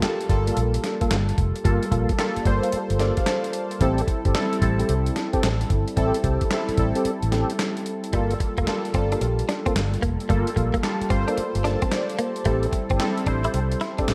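Confident and slick, this new jack swing R&B excerpt at 111 BPM with swung sixteenths in G dorian rides a gritty, thumpy sampler-style drum kit of kick, snare, hi-hat and handclaps with gated reverb and a dark, round, foam-muted fingered electric bass, while up-front detuned sawtooth analog keys with filter sweep, chorus and phaser carry the accompaniment over Gm9 and Am7 and add fills at 2.7 and 11.4 seconds, a clear tonewheel organ with key click, chorus vibrato, slow rotary speaker and tape echo supplies stabs, and, after a brief break, a direct-recorded picked clean electric guitar with subtle chorus enters with a riff at 8.1 seconds.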